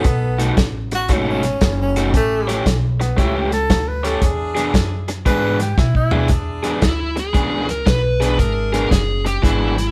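Rollicking and gritty, this electric blues shuffle at 115 BPM in E mixolydian swings over B7, A7 and E7, with a close-miked tenor saxophone taking a scooped, vibrato-laden jazz solo until 6.3 seconds while a bright overdriven guitar riff, background saxophone section stabs, a woody pizzicato upright bass and an up-front soul drum kit with a fat snare and tight kick drive the groove, and after a drum fill at 5.8 seconds a dark, smooth overdriven lead guitar enters at 6.8 seconds with the melody, all in a live-room sound with moderate reverb.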